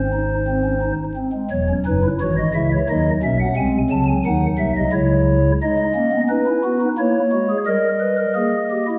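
In a straight triple metre, this brief, contemplative fragment of a serious baroque-style four-part fugue is carried by a lone pipe organ on stopped flute stops, soft, hollow and mellow with a chiff at each note's onset, sitting up front in a wet recital hall whose reverb blooms around it, while vinyl crackle and a dulled, rolled-off top end give the sound an aged, distant patina.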